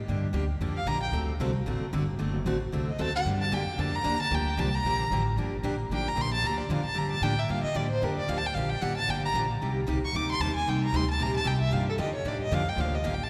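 Acoustic string swing in the jazz manouche style, this fiery, virtuosic passage is cut from a longer piece and races along at 227 BPM in G minor with a swung feel. A warm, bowed violin carries the melody as a solo from its entry at 0.8 seconds, sitting close and up front with expressive vibrato, a soft attack and sliding portamento as it climbs as high as D6. Beneath it, a brilliant, full-bodied steel-string acoustic guitar picks the accompaniment on fresh strings, also up front, with audible finger squeak. An upright bass with gut strings supplies a woody, thumpy pizzicato foundation in a dark low register. The harmony moves from Gm7 through D7 to Gm9, later shifting to Cm9 at 9.6 seconds before returning to Gm9, and the whole performance is bathed in a cathedral-like reverb with a long, ringing tail that suggests a church or concert hall.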